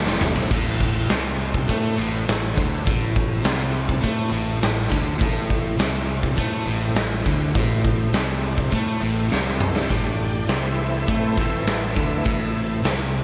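A lush hall reverb surrounds this gritty, driving classic rock passage in A minor at 102 BPM, cut from a longer piece. A big acoustic drum kit sits up front with bright cymbals, a punchy kick and a fill at 9.3 seconds, while a growling, overdriven fingered bass pushes beneath two picked guitar riffs in the background: one crunchy with slapback echo, the other a dark semi-hollow tone with tremolo. A very quiet, shouting tonewheel organ holds sustained chords through a rotary speaker, then takes a solo from 9.9 seconds.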